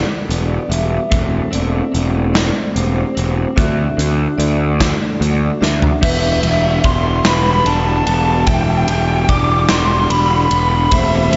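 A faint, twangy pedal steel holds sustained chords beneath softly broken-up electric guitar arpeggios and ringing, metallic vibraphone arpeggios with fast motor vibrato, before a growly fuzz bass and a punchy, bright-cymbaled big rock kit surge in at 0.3 seconds, and after a drum fill a lightly driven, twangy lead guitar melody enters at 6.0 seconds to begin a build-up in this cathartic, melancholic 6/8 post-rock excerpt, bathed in lush hall reverb with a big arena sound and a softened top end.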